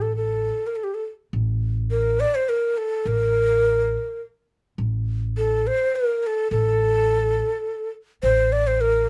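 Soulful and longing, this short excerpt of an Arabic maqam ensemble piece in A maqam kurd moves at 104 BPM in a straight 3/4, with a breathy, reed-cane ney carrying the melody between G4 and D5 with vibrato and a crisp attack, while an up-front pizzicato upright bass holds a woody, growly A1 beneath it throughout the 9.1 seconds, all set in light reverb.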